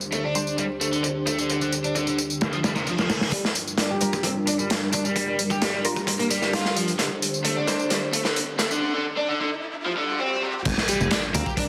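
Dense, heavily limited and dusted with vinyl crackle, this funky, energetic breakbeat excerpt at 131 BPM in G minor pairs a crunchy, gritty breakbeat kit and layered electronic tambourine and handclaps with a bright, double-tracked overdriven guitar riff, a moody analog pad with sidechain pumping and muted, phaser-tinted dub chord stabs, while a filter sweep on the guitar and a background riser build from 3.3 seconds, through a drum fill at 7.0 seconds, to a drop at 10.7 seconds, where a thick, menacing detuned saw bass and a sparkling, bell-like FM electric piano arrive briefly.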